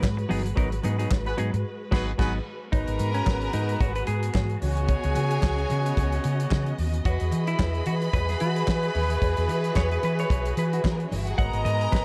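Driving and danceable, this disco passage in G# minor moves at 111 BPM in 4/4 with a swung sixteenth-note feel, cut from a longer piece. Up front, a damped 70s drum kit with a fat snare, tight kick, dark cymbals, handclaps and hi-hat sits beside a round, punchy hollow-body bass, while very quiet congas and a metallic cowbell add texture in a small room. A clean, compressed semi-hollow electric guitar plays accompaniment over lush, bowed sustained chords from a clear studio string section, moving from G#m7 through C#9sus4 and Emaj9 before returning to G#m7. A distant, roomy horn section joins with pop-style stabs at 1.3 seconds, in the middle of a band accent that runs from 0.6 to 2.7 seconds. From 2.7 seconds, a rich violin section adds a smooth second line as a clean electric guitar solo takes the lead, all within a dark, warm production.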